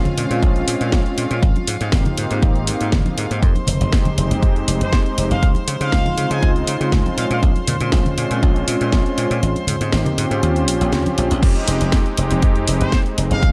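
A dry, close-sounding cut from a longer nu-disco track in F minor, this groovy, sensual groove runs at 120 BPM in a straight 4/4, built on a punchy, up-front thumbed slap bass, a tape-warm electronic kick and a layered house kit with a cracking snare, hi-hat and crash, while hard-hand congas sit in the background. A detuned, warbling analog pad with chorus and analog delay carries chords such as Bbm9, Abmaj7 and Dbmaj9, and an earthy chamber string section with light vibrato holds sustained chords under sidechain pumping. A brilliant trumpet section with tape echo takes the melody from 4.8 seconds, the kick drops out at 9.4 seconds, and the strings and congas stop as the track falls into a drop on Fm9 at 11.4 seconds, where the trumpets briefly return near the end.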